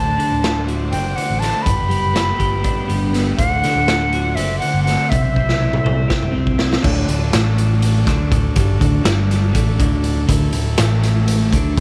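A straight 7/8 pulse at 243 BPM drives this trippy, hazy psychedelic rock excerpt in D mixolydian, where a bright, twangy, double-tracked twelve-string electric guitar riff with phaser rides over a dark, round fingered bass with transformer saturation, a buzzy vintage combo organ holding sustained chords in spring reverb, and a punchy, gritty garage drum kit up front in a pumping stone room. Meanwhile an airy, reedy flute carries the slapback-echoed melody until 6.3 seconds, as the harmony moves through D7, Gmaj7 and Cmaj7 and a drum fill from 5.4 seconds leads to a settled D at 6.8 seconds.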